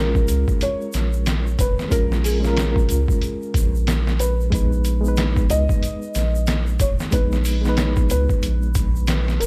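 A round, deep analog bass sits up front, its dark, sustained tone with a fast attack anchoring this melancholic, brooding trip hop excerpt at 92 BPM in 4/4, with a 60% swing on the sixteenths. Beside it, a sampler-style drum kit enters at 0.1 seconds, compressed, pitched down and overdriven, with a muffled, thumpy kick, a medium-tuned snare and hi-hat. A reedy electric piano carries the accompaniment, its worn, slightly out-of-tune voice coloured by light overdrive, fast tremolo, vintage 12-bit sampler grit and tape echo, as if heard through its built-in speakers. Over this, a felt-muted upright piano plays a soft, intimate melody with a short sustain and thick felt, also touched by tape echo. A bright egg shaker, played with hard hands in a small room, joins at 0.2 seconds, and a digital ambience wraps the whole in Bb phrygian as the harmony moves from Bbm7 to Abm at 4.5 seconds.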